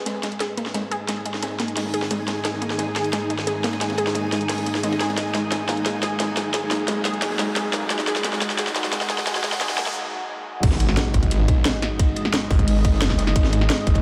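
At 176 BPM in a straight 4/4, this excerpt of dark technical drum and bass sets two drum kits running from 0.1 seconds: an up-front electronic kit with a cracking snare, high-pass filtered hats and cymbals and studio reverb, over a very quiet, gritty acoustic breakbeat kit with dark cymbals, a high-tuned snare and a rolled-off top. Over this build-up a deep, moody ambient pad holds sustained chords with chorus, a cloudy, evolving granular pad blurs the upper register, and a lush, bright unison pluck plays wave-folded, ring-modulated arpeggios through analog delay, with the pads and pluck pumping against the sidechain and the ambient pad and arpeggios both under filter sweeps. A very quiet riser and impact enters at 7.2 seconds, a drum fill runs until a short break, and the drop lands at 10.6 seconds. There a tight electronic kick, re-recorded in a small room, arrives with a snarling, growling distorted saw bass, overdriven and compressed with a moving notch, sitting low and up front. 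The whole mix is soaked in a cathedral-like reverb, giving a dreamy yet futuristic and aggressive feel.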